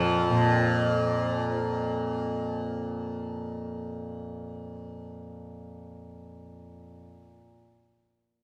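A bright, softly plucked tanpura sits up front, its buzzing drone ringing from F2 to F3 across the full 7.4 seconds of this short fragment from a longer Indian classical piece. The mood is meditative and solemn, set at 96 BPM in a straight 4/4. Behind it, a warm, plectrum-plucked sitar sounds in the background on F3, its sympathetic strings adding a shimmering halo before it falls silent at 1.6 seconds. From there the tanpura carries on alone, holding the stillness. A moderate studio reverb with a 0.6-second decay gives the sound a gentle sense of space.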